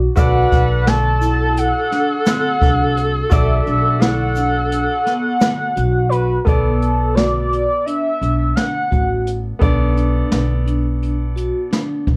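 The recording has a worn, warbling cassette-tape character with audible pitch drift, set in a moderate studio room. This short cut from a longer progressive instrumental in 9/8 feels intricate and driving. A jazz brush kit gives a natural pulse with a boomy kick beside a woody, thumpy pizzicato upright bass on gut strings placed up front. A bright grand piano with audible action noise and long sustain plays accompaniment, while a vibraphone rings out metallic arpeggios with slow motor vibrato. The melody comes from a shimmering, nasal pulse-width synth lead with chorus, vibrato and portamento, joined by a distant, roomy alto saxophone on a second line until 6.4 s, with a grainy tube shaker sitting in the background early on. The harmony moves from D over B to B minor seventh at 6.5 s, and the lead drops out at 9.3 s.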